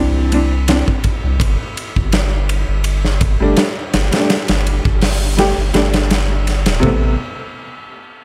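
Brooding and hypnotic, this short trip hop passage, cut from a longer piece, moves with a light sixteenth-note swing in 4/4. A dark upright piano carries the accompaniment in its middle register, its worn, woody tone coloured by tremolo and tape echo, with audible action noise and a slightly detuned, boxy character that keeps it intimate. Beneath it, a warm sub bass with a round, sine-like tone and fast attack holds sustained low notes, thickened by tube saturation. A big rock drum kit enters at 0.3 seconds, acoustic and up front, with a punchy kick, a medium-tuned snare, hi-hat and ride cymbal, all carrying a smooth big-room sound. The harmony settles on Cadd9 and Gsus2 before touching Amadd9 near the end, and after 7.2 seconds the parts have stopped and the chords drop away for a brief closing moment. The overall sound is dry and close.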